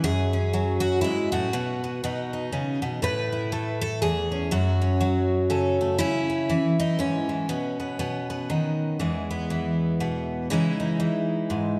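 Folk fingerstyle piece for solo picked twelve-string acoustic guitar in E major, moving at 121 BPM in a lilting, swung 3/4 with a pastoral, hopeful mood. The jumbo-bodied guitar sits up front with a bright, shimmering, octave-doubled tone ranging from E2 to B4, set in a concert hall reverb with a long tail. The harmony drifts through F#m, B, A and C#m before settling on E at 9.0 seconds and closing on C#madd9 in this short cut from a longer piece.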